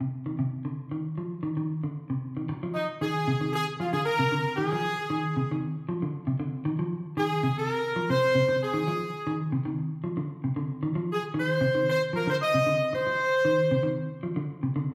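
A straight 4/4 afrobeat groove drives this intense, defiant excerpt, where a dark, clean, fingered electric guitar plays up-front arpeggios through spring reverb from the start, joined at 2.7 seconds by a bright, punchy, tight horn section carrying the melody with light vibrato in a pop style, the band playing live together in one large studio with a wet reverb.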